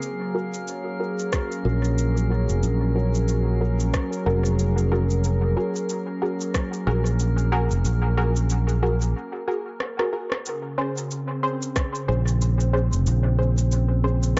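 A smooth, sawtooth analog pad with chorus holds sustained chords from the start, joined by an overdriven electronic shaker and rim click soaked in dub echo, a drifting glass-harmonics texture of calm sine overtones, and a muted, detuned dub chord stab whose filter sweeps through the opening passage. This hazy, spacious ambient dub cut from a longer piece moves at 92 BPM with a swung sixteenth feel, anchored by an up-front fingered electric bass and a tight, overdriven electronic kick that enters at 1.3 seconds. After a break at 9.2 seconds with a drum fill, the harmony shifts from Gbadd9 to Bbm9 at 10.5 seconds in an echo-heavy, softly rounded mix with light reverb.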